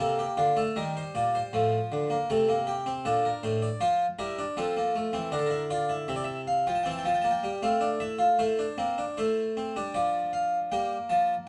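Classical baroque-style three-part fugue in Bb major at 78 BPM in 3/4, contemplative and serious, for a solo harpsichord that is close-miked, up front and brilliant with plucked French-style octave strings spanning A2 to A5, set in light reverb within a dark production, its chords moving from Bb through Eb, F and C7 before turning toward Am, Dm and Gm at 8.4 seconds in this short section cut from a longer piece.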